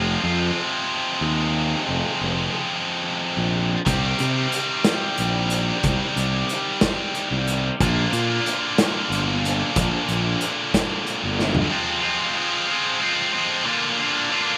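A heavy, bright, double-tracked high-gain guitar riff with slapback echo opens this moody, cool indie rock excerpt in a slow 6/8 at 61 BPM, joined from the start by a punchy, fuzz-overdriven fingered bass, while a loose, acoustic drum kit with a pumping room sound and rolled-off top enters at 3.9 seconds, drives through Cm7 and Bb with a fill at 11.4 seconds, then drops out with the bass so the guitar carries the dry closing section over Fm and Bb alone.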